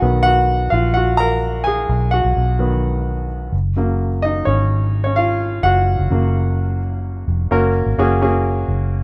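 A clear, polished baby grand piano and a vintage muted electric bass open together, setting up anthemic, hopeful piano-driven pop in a straight 4/4 feel, tuned to A4 = 435 Hz. The piano carries a solo passage through the opening stretch, its short-sustained chords sitting present and up front across a broad middle-to-upper span, moving from B to F# at 3.5 seconds. Beneath it, the fingered bass stays low and close, its foam-muted tone dark, round and punchy with an amped edge. At 7.5 seconds the music shifts into a new section, with both parts continuing to the end of this fragment cut from a longer piece. The wet studio ambience adds a short, damp room tail, and the rough home-demo mix gives the whole an unvarnished, sketch-like quality.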